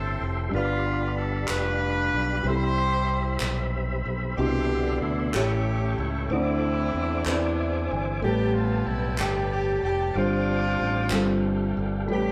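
A short, wet room reverb surrounds this band playing live together, in a reverent, uplifting slow gospel piece in 6/8, cut from a longer performance. An up-front horn section carries the smooth-topped melody with light vibrato over a woody, intimate upright piano whose action noise is audible and which adds a fill at 7.3 seconds, while a clean tonewheel organ with key click holds chords through a slow rotary speaker and chorus vibrato, and a bright, punchy fingered electric bass sits at the bottom. Crisp, distant group handclaps enter at 1.5 seconds, and a very quiet, lush bowed string section joins at 4.4 seconds with soft-attack sustained chords.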